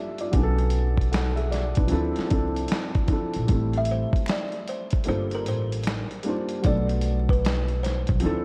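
Swung sixteenths in 4/4 carry this reflective, hazy lo-fi hip hop fragment, where a gritty, compressed sampler-style drum kit with a thumpy kick and a dark, woody pizzicato upright bass sit up front alongside a soft, felt-muted upright piano with audible action noise, before a bright, hollow kalimba melody with delay enters at 3.8 seconds and barely audible finger snaps arrive at 4.3 seconds, all over a bed of vinyl crackle and light reverb.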